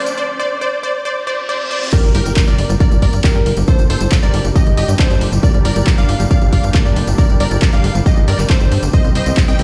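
Heard through a big sound system in a bare, stone-walled room with a light digital ambience, this bittersweet, soaring uplifting trance passage is cut from a longer piece. From the opening, a detuned unison pluck carries the melody, its bright, filter-plucked sawtooth tone pumping with the sidechain and trailed by delay. Beneath it, a filtered supersaw swell holds soft, evolving chords in the background. During the build-up, a riser and reverse cymbal climb toward an impact at 1.9 seconds, joined by tape-warm analog drum machine crashes, handclaps and hi-hats and a jingly, close tambourine. At the drop, a layered, punchy electronic kick sits up front, a tight sawtooth and square-wave sequencer bass with ring modulation drives underneath, and a catchy, full-bodied square-wave lead adds a second line with tape echo. The harmony moves from D minor to G minor, then turns to C minor at 8.9 seconds.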